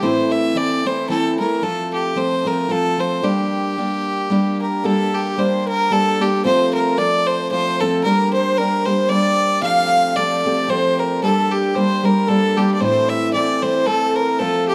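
A bright, earthy bowed fiddle leads this spirited, wild Celtic folk waltz at 113 BPM in a swung 3/4 and G dorian, up front beside a picked steel-string acoustic guitar accompaniment, while a pure wooden flute with vibrato, a crisp attack and tape echo enters in the background at 4.6 seconds with a second line, all set in a moderate recital-hall reverb within a dark production, in this cut from a longer piece.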